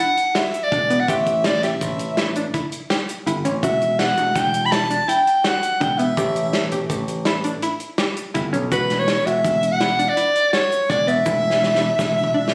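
In a driving, straight 7/4, this brooding progressive instrumental places a clear, close-miked soprano saxophone with vibrato up front over bouncy, detuned square-wave pluck arpeggios treated with chorus and phaser, a mid-forward soul drum kit with a tight kick that closes on a fill at 11.3 s, a grainy egg shaker in the background, growly, punchy picked electric bass, and a worn, lightly overdriven tine electric piano tucked behind, the whole captured on a phone in a moderately reverberant room.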